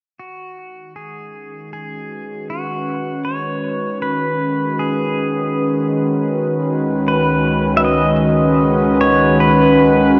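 In a straight, unhurried 4/4, this melancholic and serene ambient excerpt opens with a clean, twangy electric pedal steel carrying the melody with slide and volume swells, trailed by dub echo, while a warbling, nostalgic, lo-fi tape-like pad of detuned sawtooth and triangle tones enters at 1.7 seconds with mellow sustained chords under chorus. Both parts fade in across the passage, moving from C#9sus4 to G#m7/C# at 6.3 seconds, and a wet plate reverb bathes the echo-heavy mix.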